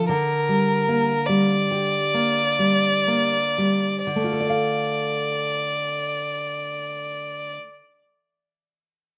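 A rich, smooth bowed violin with vibrato carries an elegiac melody up front, touched by slapback echo, over a full-bodied fingerpicked nylon-string guitar in this melancholic romantic duo excerpt in D minor, a rubato passage in 3/4 at roughly 39-55 BPM that slows through its first 4.1 seconds and moves from Gm/D to Dm, set in light reverb with an open outdoor air, the violin falling silent at 7.6 seconds and the guitar at 8.0.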